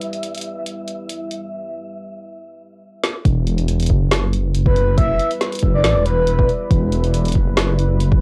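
A half-time deep dubstep groove of woody snare and dark hi-hats opens this meditative, shadowy excerpt over a moody, detuned sawtooth pad with chorus and reverb, while an airy, wind-like tuned noise texture sounds until 1.5 seconds; after a drum fill, the drop at 3.3 seconds brings in a punchy electronic kick and a rumbling, saturated detuned saw bass up front, and a breathy, flute-like synth lead with vibrato, chorus and dub echo floats in at 4.7 seconds, with the kit, pad, kick, texture and lead carrying a cassette-tape grain from a fairly dry home recording.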